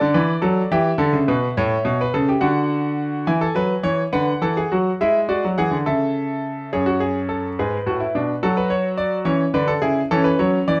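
A dark production sets a solo grand piano in a moderate stone room, its tone bright and brilliant yet intimate, placed up front with long sustain and audible action noise. This stately, joyful baroque-style classical fugue in three parts moves in a straight 6/8, its opening passage cadencing through dominant-seventh harmonies before the music turns toward minor chords at 6.7 seconds and pauses on a suspended thirteenth chord as this fragment of a longer piece ends.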